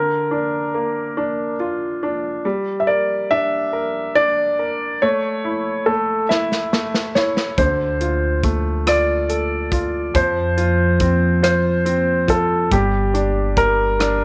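Dramatic and melancholic, this six-eight pop ballad opens with two pianos: a polished, intimate grand piano carries the melody with long sustain and audible action noise, while a baby grand with an open, short-sustained tone plays the accompaniment. A natural country drum kit enters at 6.3 seconds with a fill, its punchy kick and medium-tuned snare joined by hi-hat and rim click, and a woody pizzicato upright bass arrives at 7.6 seconds. The pianos and bass sit up front in a small room with light reverb.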